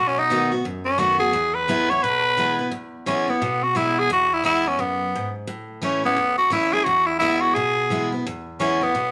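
With light reverb and the feel of a band playing live in one room, this rollicking, retro rock excerpt swings along at 174 BPM in E major, as a raspy, growling tenor saxophone with light vibrato carries the pop-style melody up front, taking a solo through the opening 2.7 seconds, while a bright, full-bodied picked dreadnought acoustic guitar picks out the accompaniment from B7 to E, then A and back to E.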